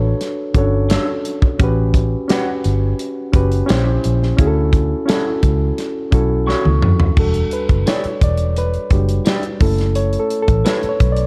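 A reedy electric piano and a round, foam-muted fingered bass open this smooth, lush 1970s-style soul excerpt at 86 BPM in E dorian, with a punchy modern studio drum kit and its bright cymbals joining almost at once. A twangy, slightly broken-up electric guitar riff sits lower in the mix from 0.9 s, and after a piano fill and a drum fill, the electric piano takes a silky solo from 7.2 s over Em7 and F#m7 chords. The dark production is bathed in studio reverb.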